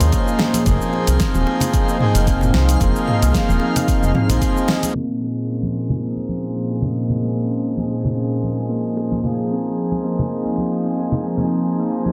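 A dense, heavily limited mix with light reverb and a softened top end gives this fragment of organic downtempo a close, hazy sound and a meditative, mystical mood over a gently swung 4/4 groove. A detuned analog pad holds sustained chords with chorus, while a reedy, breathing harmonium fills in accompaniment, both pumping against the beat, and the harmonium carries tape echo. A woody kalimba plays ringing arpeggios through a low-pass filter and tape echo, and a faint, twinkling granular texture sparkles high in the background with its own reverb. A deep house kit with a fat snare, hi-hat, toms and cabasa drives the rhythm, joined at first by a deep electronic kick and an up-front, dark gliding synth bass, both of which drop out around 4.5 seconds, while ringing bongos and congas sit further back. After a band accent at 4.7 seconds, filter sweeps move across the kalimba and pad from 5.0 seconds as the chords move between Bbm9 and Fm7.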